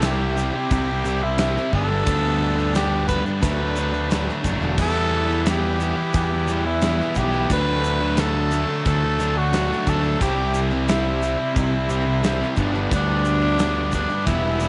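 Classic rock with a swaggering, gritty mood, this short excerpt moves at 88 BPM in a straight 4/4 through a progression of C, G, D, E minor, D, C and G. A raspy, growling tenor saxophone carries the melody up front, bright with light vibrato and a slapback echo. Beneath it, a fuzzed, fingered electric bass sits forward in the mix, punchy and growly. Two overdriven guitars play the riff in the background, one bright and picked, the other a hollow-bodied semi-hollow with a warmer tone, joined by a thick tonewheel organ through a slow rotary speaker that is barely audible. A gated 80s drum kit with a tight kick, medium-tuned snare, hi-hat and crash cymbals sounds big and polished from the background, stopping at 14.4 seconds, while a grainy, vintage-toned egg shaker adds faint texture. The whole mix sits in a small room with light reverb and a softened top end.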